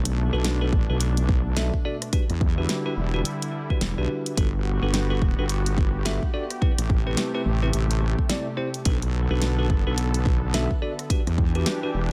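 Cut from a longer piece, this funky, gritty glitch hop groove sits in a digital ambience, with a heavy, saturated sawtooth-and-sine wobble bass and a punchy, layered electronic kick up front, a pop drum kit adding a fat snare, rim clicks and swung hi-hats in small room ambience, bright bell-like tine electric piano stabs carrying 12-bit sampler grit, digital delay and sidechain pumping, and a detuned, warbling analog pad holding smooth, pumping chords over a Bm7, Em7, Gmaj7, Am7 progression.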